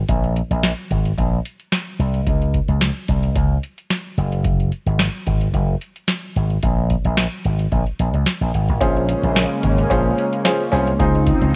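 A straight 4/4 groove at 110 BPM drives this early-eighties boogie funk excerpt in Bb minor, funky and built for dancing. A booming analog drum machine sits up front from the start, its deep kick, tonal snare and metallic hi-hats setting the pulse, while a bright, punchy slap bass runs through an envelope filter and an amp, prowling low between Gb1 and Db2. The opening stretch moves from a chordless groove to Gbsus2 and Bb7(no3) harmony, and at 8.8 seconds the arrangement opens up on a Bbm9 chord, later shifting to Dbmaj9. There a warm concert grand piano enters with an intimate, natural tone, its action noise audible and its low end deep. Alongside it, a shimmering, retro pulse-width pad holds sustained chords with a slow attack, its detuned sawtooth and pulse waves thickened by chorus. A digital ambience surrounds the mix, and the passage is cut from a longer piece.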